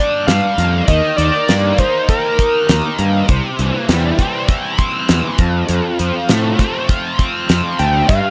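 Trippy and hypnotic, this psychedelic rock excerpt moves at 100 BPM in a straight 4/4 over a Gm, Eb, C, F progression, with a double-tracked, picked electric guitar riff shimmering through flanger, a growly, punchy fuzz bass played with fingers, and a dry, damped 70s drum kit with a fat snare and tight kick, all close in a nearly reverb-free sound, while a screaming, wave-folded synth lead with vibrato and slapback echo carries the melody until 2.9 seconds before returning at 7.8 seconds.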